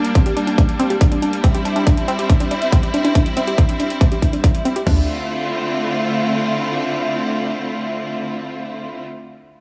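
Uplifting trance at 140 BPM in D minor, bittersweet and driving, where a punchy, up-front big-room kit of kick, crash and toms and metallic electronic hi-hats drive under a round, wave-folded analog pluck arpeggio with chorus, digital delay and sidechain pumping, while a lush, biting bowed string section sustains pumping chords over Gm, C and then Dm7, carrying on alone after the drums and pluck stop near 5 seconds, all in light small-room reverb in this short cut from a longer piece.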